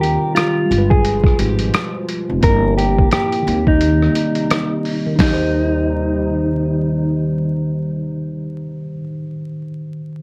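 Lo-fi hip hop at 87 BPM in Eb major, cosy and dreamy, with a swung 16th-note feel, moving through Eb69, G7b9, C7/G and Eb6 chords under a vinyl crackle. A dark, clean, fingered electric guitar carries the melody up front through spring reverb and tape echo until 7.2 seconds, while a worn, slightly out-of-tune tine electric piano plays lightly overdriven, cassette-tinged accompaniment and a moody, detuned analog pad with chorus sustains chords in the background. A woody pizzicato upright bass holds the low end, and a muffled, compressed sampler-style drum kit with a thumpy kick, rim click and hi-hat sits up front before dropping out at 5.4 seconds, in this brief cut from a longer piece.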